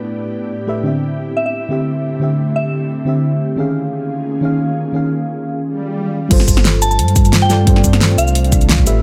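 Swung 16ths at 176 BPM in 4/4 set up this lush, dreamy liquid drum and bass passage in G dorian, cut from a longer piece. A round FM electric piano sits up front with chorus, a low-pass filter and tape echo, playing decaying accompaniment over an ethereal, detuned pad that blooms slowly with ensemble chorus and its own reverb, moving through A9sus4, D9sus4 and Eb9sus4. A soft, pure synth bell carries the melody high up from 1.4 seconds, touched with chorus and dub echo, and returns later on. An electronic swell rises at 5.7 seconds into the drop at 6.3 seconds, where a deep sine sub bass with its octave arrives on G9sus4 alongside a punchy, tape-warm kick and a layered pop kit of fat snare, metallic hi-hats, shaker and crash, with the kit's hats, cymbals, snare and percussion softened by low-pass filtering. The whole mix sits in light reverb.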